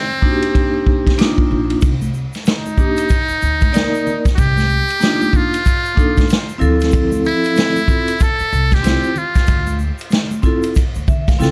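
A muted trumpet opens this nocturnal, mellow jazz-hop excerpt at 94 BPM in C dorian, playing a buzzy, breathy solo line with scooped notes and tape echo. Ringing vibraphone with fast motor vibrato and an up-front vintage drum kit with dark cymbals and a punchy kick join it in a swung groove over Cm9 moving to Dm9, while woody, thumpy pizzicato upright bass with tube saturation enters at 1.5 s and tube shaker and congas sit in the background. The trumpet drops out at 9.8 s before a vibraphone fill at 10.8 s, all captured in a dry, gritty recording with transformer saturation and vinyl crackle.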